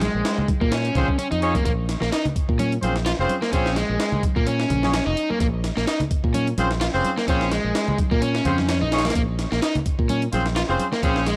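A swung 128 BPM breakbeat groove in Bb minor struts with gritty swagger as a pitched-up, compressed sampler-style kit with a thumpy kick and high-tuned snare drives an up-front overdriven semi-hollow guitar riff, saturated, filtered and tape-echoed with 12-bit grit, over a growly fingered electric bass, while ringing congas sit in the background and a tight, punchy horn section in octave doubling enters with echoed stabs at 1.0 seconds, all caught in a dry, crackly hardware recording from a longer piece.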